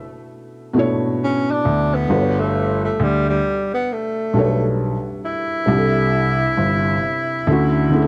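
A felt-muted upright piano with a cassette-tape tint and audible action noise opens this cosy, dreamy hip hop fragment at a swung 67 BPM, before a breathy, whispered tenor saxophone enters at 1.2 seconds with a subtone, vibrato and scooped notes, and a worn baby grand piano takes the long-sustained bass at 1.7 seconds, all in a moderate studio reverb over Bm11, Gmaj9#11, C6 and Dmaj9.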